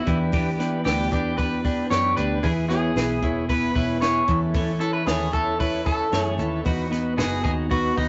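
A straight 4/4 pulse from a compact cocktail drum kit, with a punchy kick, high-tuned snare and hi-hat, drives this breezy, nostalgic slice of jangly indie pop. A dark, round, foam-muted electric bass moves under chords of G, E, Aadd9 and B, while up front a twangy electric guitar on the verge of break-up carries the melody, a clean, compressed twelve-string electric guitar plays arpeggios, and a reedy, overdriven combo organ with light vibrato fills out the accompaniment. A very quiet, shimmering, octave-doubled twelve-string acoustic guitar adds a faint finger squeak, and the whole cut has the rough, dulled sound of a small rehearsal room.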